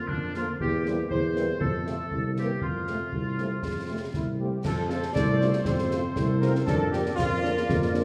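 Spirited and proud, this brief snippet from a longer military-style march for wind band moves in a straight two-beat stride. A mellow trumpet section carries the melody with light vibrato and a soft, tight attack, sitting close-miked. Beneath it, an up-front tuba anchors the bass with a warm, smooth-topped tone, while concert bass drum, snare drum and clash cymbals keep time with a close, dry sound and bright cymbals. A roomy woodwind section plays a distant second line, and a dark French horn section fills in accompaniment in the background. At 5.2 seconds a trombone section joins with sustained chords, all of it set in the reverberant air of a recital hall.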